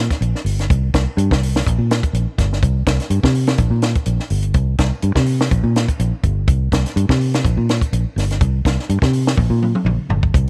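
Joyful and funky, this short afrobeat excerpt from a longer piece rides a 124 BPM groove in 4/4 with a light sixteenth-note swing. A fingered electric bass carries the low end from the opening moment, its dark, round, foam-muted tone heard direct and amped, moving between G1 and C3 and sitting up front. A compact cocktail drum kit joins at 0.1 seconds with hi-hat, kick, snare and toms, its sound acoustic and natural in a tight booth, with a high-tuned snare and a tight kick placed up front. The drums play a fill from 9.4 to 10.3 seconds before the pair plays on to the cut at 10.5 seconds. The recording of this bass-and-drums duo is dry, with little reverb.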